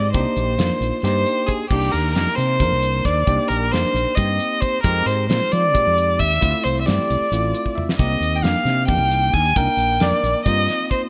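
Electric jazz fusion in an odd seven-beat metre with a straight feel, this brief cut from a longer piece sounds intense and nocturnal. A rich, nasal violin carries the melody up front, its bowed single line smooth and even with vibrato and a slightly boxy tone. Beneath it, a bell-like tine electric piano plays clean, bright accompaniment bathed in lush chorus, while a dark, round fretless electric bass gives punchy, amped support. A damped 70s drum kit with a fat snare and tight kick sounds dry yet carries gated reverb, moving across crash, hi-hat and toms. Around 7.3 seconds the electric piano slips in a short fill, joined by a drum fill at 7.7 seconds just as the harmony returns to Cm9 at 8.0 seconds. The whole has a bright 1980s-style digital sheen with light reverb.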